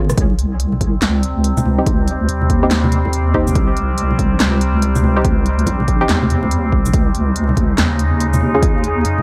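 A dark, saturated wobble bass sits up front in this heavy, cavernous deep dubstep excerpt at 142 BPM in a swung half-time feel in C phrygian, joined by a punchy layered electronic kick, a deep house kit of handclaps, hi-hat, rim click, shaker and snare opening on a drum fill, soft-handed bright congas in the background, a nasal, resonant drone with moving overtones and built-in reverb entering at 0.7 seconds, and muted sawtooth dub chord stabs with 12-bit sampler grit and dub echo arriving at 1.8 seconds, all over a bed of vinyl crackle as the harmony moves from Cm to Db5.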